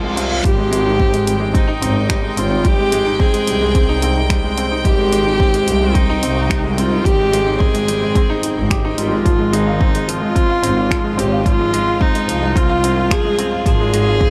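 Luminous and tender, this piano and strings electronica excerpt places an intimate viola melody up front, played sul tasto with a soft attack and airy bow and trailed by delay, over a woody upright piano riff that also carries delay. Bowed chamber strings hold biting sustained chords in the background, while a nasal, earthy double bass section plays the bass line from a distance; both string groups pulse with sidechain pumping. A deep house kit of finger snaps and dark hi-hats enters at 0.2 s, joined at 0.4 s by a layered, up-front electronic kick, both set in small room ambience, and the harmony moves from Abmaj7 to Fm/Ab at 9.3 s.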